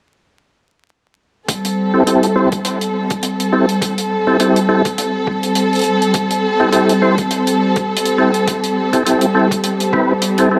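Glitch hop at 103 BPM in A minor with a 16th-note swing, funky and playful, cut from a longer piece that sits on a single Am7 chord under a layer of vinyl crackle and moderate plate reverb. Lush, woody bowed strings hold sustained chords up front with a sidechain pump, joined at 1.9 seconds by mellow, percussive tonewheel organ stabs with key click, fast rotary speaker, chorus vibrato and tape echo, over a gritty, pitched-down sampled kick and a dark, smooth acoustic hi-hat. From 3.4 seconds a very quiet, warbling, nostalgic tape-like pad with a slow attack drifts in above.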